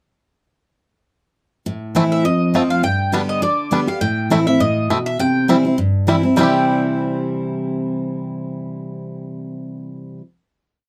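Lively and joyful, this short swung bluegrass piece opens at 1.7 s with a bright, full-bodied dreadnought guitar playing alternating bass and strums with bass runs, joined by a twangy, percussive fingerpicked banjo in three-finger rolls and off-beat vamping, while an up-front, woody mandolin on double strings carries a fiddle tune in running eighth notes, the trio heard through close, detailed microphones in a moderate booth ambience before settling on a final chord at 6.4 s.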